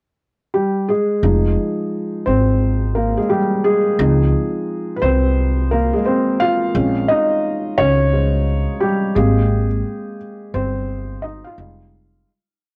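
A soft, thick-felt upright piano with cassette-tape grain opens at 0.5 s on a pickup, then from 1.2 s it holds intimate rootless chords moving through Fm7, Dbmaj9, Bbm9, Abmaj9 and Fm9 as a sampled-feeling loop, while a woody, thumpy pizzicato upright bass enters with a sparse line up front in this hazy, nostalgic hip hop piece in F minor at 87 BPM with swung 16ths, light reverb and a fade-out from 9.5 s.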